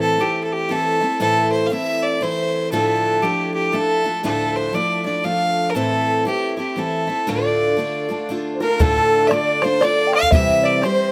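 A clear, biting fiddle carries the melody up front in this wild, dark and lively Celtic waltz in D minor, its bowed line intense with light vibrato and a smooth top. Beside it, a picked twelve-string acoustic guitar accompanies from the start, its octave-doubled strings shimmering brightly. The tune moves at 118 BPM in 3/4 with a swung eighth-note feel, and the harmony travels from Am through Dmadd9 and Dm before landing on C. Near 8.5 seconds an airy, wooden baroque flute joins in the background with a crisp attack and straight tone, and a very quiet fingerpicked open-back banjo adds a plunky, twangy second line alongside it. An open, boomy bodhran enters at 8.8 seconds as the music shifts into a new section, sounding close and dry under light reverb. The whole is captured with close, detailed microphones, and it is cut from a longer piece.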